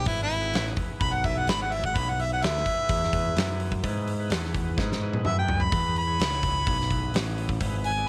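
Raunchy and swaggering, this short excerpt cut from a longer piece sits between blues rock power trio and southern rock, moving in a straight 4/4 over a single E chord. A clear harmonica with a soft attack carries the melody as a jazz-style solo up front, its scooped notes roughened by overdrive. Beneath it, a growling picked electric bass, direct and amped and overdriven, holds the low end up front. A big acoustic rock kit with a fat snare and punchy kick drives the groove, breaking into a drum fill from 4.8 to 5.7 seconds. In the background, a thick, gritty tonewheel organ holds sustained chords through a slow rotary speaker, all in a dry room with little reverb.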